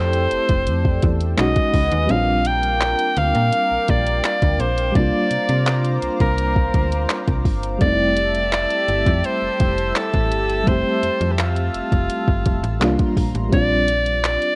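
Romantic and smooth, this contemporary R&B excerpt moves at an unhurried 84 BPM in F major, with an edgy, close-miked alto saxophone out front carrying a forceful, vibrato-laden pop melody through a digital delay. Beneath it, a tremolo FM electric piano adds dark accompaniment with a noise layer, a chorused pulse-width pad shimmers with retro sustained harmony until 13.5 seconds, and a snappy, metallic slap-like FM bass anchors the low end. An electronic drum kit of soft kick, warm hi-hat and handclaps carries vintage 12-bit sampler grit, its kick dropping out from 2.1 to 3.5 seconds, while the whole mix sits in a worn, warbling cassette-tape ambience over chords moving from Fmaj9 through Bb6 and C9sus4.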